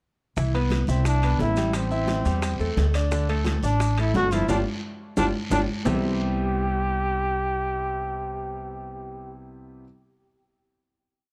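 A joyful, sunny salsa piece in C major at 175 BPM, where a bright, vibrato-laden trombone carries a motif-based melody up front over a woody, thumpy upright bass playing a tumbao that anticipates the chords, and a brilliant baby grand piano plays a montuno in octaves. Tight bongos, ringing congas, metal-shelled timbales and grainy maracas sit in the background, and together with a raspy guiro they drive the verse until a band accent and a drum fill close it out at 5.9 seconds. The bass, piano and trombone then hold a final Cmaj7 chord in a dry, close 1970s-style studio sound with small room ambience.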